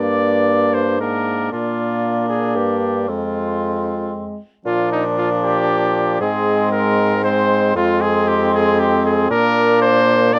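A cornet with a smooth, warm top carries the melody up front from the opening moment of this solemn, rustic renaissance-style consort dance in triple time, joined throughout the 10.4 seconds by a mellow cor anglais second line with light vibrato, a bright trombone accompaniment sitting distant and roomy, and a clear, soft-attacked bassoon bass up front, all under light reverb in a dark production that sounds cut from a longer piece.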